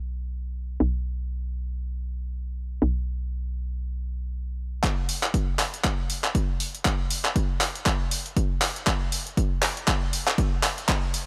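A hollow, knocking FM bass with sidechain pumping opens this deep, smooth deep house excerpt at 119 BPM with a swung 16th-note feel, playing alone until 4.8 seconds, when an overdriven, punchy electronic kick and a tape-warm kit of handclaps and hi-hats take over for a build-up and drum fill that runs to 11.3 seconds, all up front in a dry mix.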